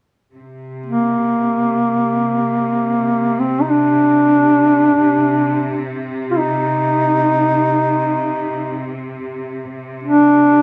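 A mellow duduk carries the melody up front in this mournful, solemn piece of Caucasian folk music, moving in free time in C minor. Its line stays between Bb3 and F4, played in a folk style with a soft attack, vibrato and scooped notes. Beneath it, a string section holds a bowed drone on C3; it sounds clear, focused and lush, sits distant in the mix, and also carries vibrato. The strings enter at 0.3 seconds, and the duduk joins at 0.9 seconds, with both continuing to the close at 10.6 seconds. The two parts were captured live together in one room, bathed in a large, wet reverb with a 1.2-second decay, and the recording is cut from a longer piece.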